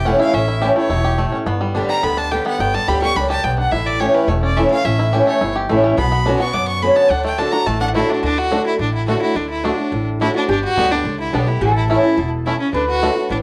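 A straight, brisk 4/4 at 213 BPM drives this rustic, joyful bluegrass excerpt in D major, cut from a longer piece, with a woody pizzicato upright bass and a boxy, picked old ladder-braced acoustic guitar holding down the bass and accompaniment while a twangy, percussive banjo picks out arpeggios. Up front, a clear, earthy fiddle with light vibrato and an airy bow takes a solo melody touched by plate reverb until 8.2 s, when a nasal, metallic lap resonator guitar played with slide and fingerpicks joins with a second line. The small room and worn, warbling cassette tape with its pitch drift give the recording a homespun, aged feel.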